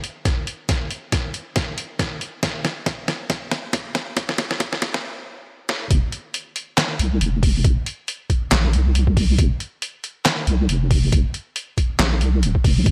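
A deep, dark wobble bass with a soft triangle-and-sine tone and a chorus sheen drops in at 5.9 seconds, anchoring this cavernous, meditative deep dubstep excerpt in a swung, half-time groove. Before that, a build-up of drum fills and a filter sweep runs over a gritty, pitched-down trip hop sampler kit of handclaps, hi-hat and a medium-tuned snare, joined by a thumpy, compressed electronic kick, before everything stops at 5.0 seconds. The up-front, tape-warm drums sit in light reverb, and a high-pass filter shapes the overall sound.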